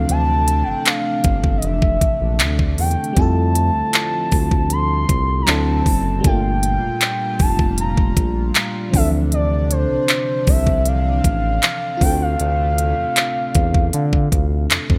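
Tender and dreamy, this contemporary R&B excerpt moves at 78 BPM in a straight 4/4, with a gliding sine lead carrying the melody through chorus, delay, vibrato and portamento over a glassy, bell-like FM electric piano sitting in the background and a shimmering, retro pulse-width pad that pumps against the sidechain. Up front, a smooth synth bass anchors the low end while an overdriven trap kit with knocking kick, crisp hats and handclaps enters at 0.1 seconds. The chords drift from a rootless Bbmaj9#11 through Fmaj7, D7 and Gm9 to Dm7 and Dm9, all framed by light digital ambience and bright 1980s-style production.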